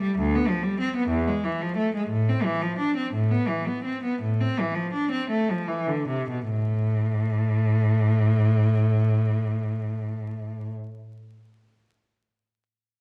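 Vinyl crackle and a reverberant recital-hall wash frame this short cut from a longer baroque-style suite movement for unaccompanied cello in A minor, flowing yet solemn in a rubato 12/8 at 47-69 BPM counted in dotted quarters, where a single bowed cello, placed up front with a clear, focused tone and vibrato, ranges from D2 to D4 between 0.0 and 10.7 seconds, slowing through its opening 6.5 seconds before moving into a new section.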